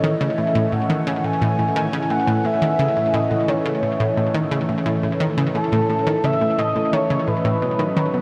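Ambient, sequencer-driven space music with a luminous, cosmic mood, where a round, bright analog pluck riff with chorus and delay and a smooth, expressive synth lead melody with vibrato sit up front over a swirling, full-bodied phased analog pad of sustained chords, all soaked in a huge, dreamy reverb as the harmony moves from A to B7 at 7.6 seconds in this short excerpt from a longer piece.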